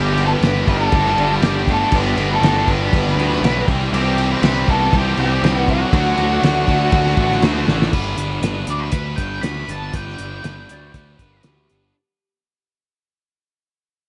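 Confident and swaggering, this classic rock passage struts along in a straight 4/4 over a G, C and D progression. A dark, fuzzy octave-fuzz lead guitar carries the melody with a slapback echo, while a second octave-fuzz guitar shadows it lower in the background. Beneath them, a bright, tight distorted guitar and a cranked stack guitar, overdriven and set back in the mix, drive the riff, and a warm, overdriven fuzz-picked electric bass sits up front. The cloth-damped drum kit thuds along in the background, muffled and lo-fi, with a fat snare, tight kick and dark cymbals, and it plays a fill at 7.7 seconds before the music begins fading out from 7.9 seconds. At 10.7 seconds a faint, twangy clean lap steel guitar slides in with volume swells, all inside a small room with light reverb.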